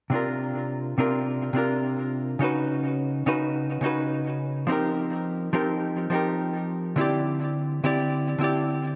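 Chillout with a relaxed, sunny mood, moving at an easy pace with a gentle swing on the sixteenth notes. A single clean, fingered hollow-body electric jazz guitar carries the accompaniment from 0.1 to 9.0 seconds, sitting up front in the mix with a dark, compressed tone. Its sound is coloured by vintage 12-bit sampler grit, a low-pass filter and delay, giving the chords a dusty, softened edge. The guitar moves through a sequence of suspended ninth chords, C9sus4, Db9sus4, F9sus4 and D9sus4, each lasting roughly two seconds. A long plate reverb soaks the whole dreamy mix, and the passage is cut from a longer piece.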